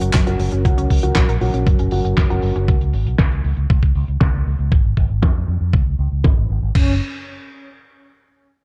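A straight 4/4 italo disco groove opens this sunny, romantic excerpt, built from a gritty, compressed sampler-style kit with a thumpy, up-front kick and crash plus a dry, damped 70s kit supplying a fat snare, handclaps and rolled-off hi-hat, while a filter sweep plays over the drums. A bright, amped fingered electric bass with an envelope filter drives up front. A lush, detuned sawtooth unison pluck plays background arpeggios and a dark, boxy grand piano with audible action noise adds stabs, both with tape echo, until 2.7 s, and a round, chorused synth brass note sounds briefly at 6.8 s in the dark production with light studio reverb.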